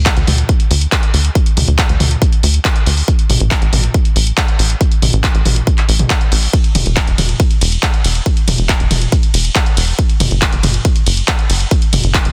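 Uplifting trance at 139 BPM in a straight 4/4 feels euphoric and emotional, with an overdriven, layered kick sitting up front over a dark, detuned sawtooth sequencer bass whose plucky filter and sidechain pumping drive the groove, while a punchy analog drum machine adds handclaps, hi-hat, ride cymbal and toms, pumping on the hats, toms and cymbals, all in a dry, dense, heavily limited modern mix in this short excerpt of a longer piece.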